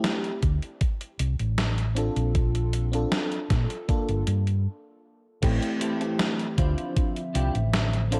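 A round, dark hollow-body electric bass sits up front in this hazy, melancholic vaporwave fragment, fingered with tube saturation and entering at 0.4 seconds alongside a thumpy, overdriven electronic kick. A lush, dreamy FM electric piano layered with a soft pad carries the accompaniment from the start, its fast-attack, decaying tones coloured by analog chorus and delay. A sampler-style gated 80s digital drum machine supplies crash cymbal, hi-hat and a gated-reverb snare, overdriven and re-recorded in a small room. At a slow 78 BPM in 4/4 with a straight feel, the chords move through Dm7, Bbmaj7, Gm9, Am7 and Dm9 in D minor, with a brief break before the second section. From 5.8 seconds a warbling, lo-fi tape-like pad with slow attack and long release adds nostalgic sustained chords, while a clean, picked electric guitar riff, bathed in chorus and delay, drifts through a digital ambience.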